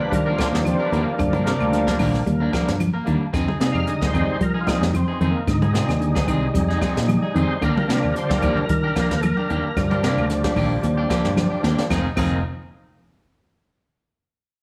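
Intense and hypnotic, this afrobeat excerpt from a longer piece rides a lightly swung 16th-note groove in 4/4, moving between Ebmaj7 and Fm7 chords. An overdriven tonewheel organ sits up front and takes a solo through the first 11.9 seconds, its thick, gritty tone carrying key click, second-harmonic percussion, chorus vibrato and a slow rotary speaker. Beneath it, a round, dark fingered electric bass anchors the low end, while an electric guitar at the edge of break-up plays twangy stabs and a clean semi-hollow guitar adds dark, hollow-bodied arpeggios in the background. A jazz kit played with brushes supplies boomy kick, a high-tuned snare, hi-hat and dark crash cymbals, with a drum fill from 11.4 to 11.9 seconds leading into a brief new section. Very quiet congas with a bright, thin skin add close, dry percussion, joined by woody claves in the background, all set in a large studio reverb with a touch of small-room ambience.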